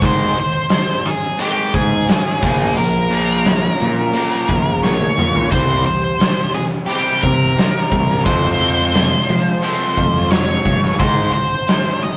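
A straight 4/4 pulse at 88 BPM drives this swaggering, gritty classic rock passage in F minor, taken from a longer piece. The big rock drum kit sits up front with a dark, smooth sound, a fat snare and a punchy kick, working across hi-hat and toms and rolling into a fill at 4.8 seconds. Two overdriven electric guitars carry the riff in the background: one biting and warm, the other a cranked stack with a bright edge. The fuzz picked electric bass is round and amped with overdrive, and it drops out at 11.3 seconds, while a very quiet twelve-string acoustic adds a woody, shimmering, octave-doubled layer from its old strings. Out front, the octave-fuzz lead guitar sings the melody with wah and distortion over chords moving from Ab through Bbm and C to Fm, all caught in a rough rehearsal-room recording with a moderate stone-room reverb.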